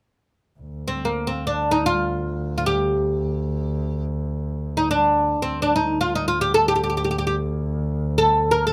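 Unfolding in free time, this brief excerpt of Arabic music in D maqam kurd carries a longing, melancholic mood. A single muted double bass, bowed con sordino with light vibrato, holds a dark, veiled drone on D2 from 0.6 seconds, and the plectrum-plucked fretless oud enters at 0.9 seconds with a melody between Bb3 and Bb4, its double strings sounding bright and woody. Both parts sit up front under close, detailed microphones in light reverb, the oud louder than the bass.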